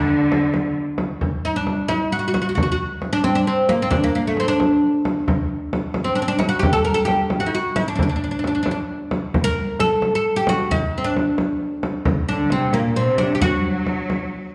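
A woody, fretless oud carries the melody from start to finish in this stately, festive Persian modal piece, cut from a longer work in D dastgah homayun at 88 BPM in a straight 6/8, tuned to A4 = 439 Hz, its plectrum-plucked double strings sounding deep and up front. A lush, bowed cello section with smooth-topped vibrato adds a second line only briefly at the opening and again from 12.3 seconds to the close, while a close, dry frame drum played with soft hands enters at 0.3 seconds. The ensemble sits in a wet recital hall reverb, heard from further back in the room.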